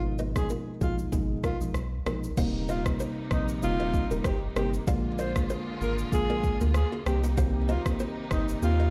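Played on a big sound system in a bare room with stone room reverb, this breezy, sunny afrobeats excerpt at 96 BPM in Eb major sets a breathy, whispered alto saxophone melody with light vibrato and digital delay over soft, round electric-piano-like synth keys with chorus, a thick saturated sub bass up front, a fingerpicked nylon-string guitar riff with its own delay, and a produced afro-pop drum kit with deep kick, rim click, shaker and crash cymbal, while a lush bowed string section with sidechain pumping joins at 2.4 seconds as the harmony moves from Abm6 to Eb6.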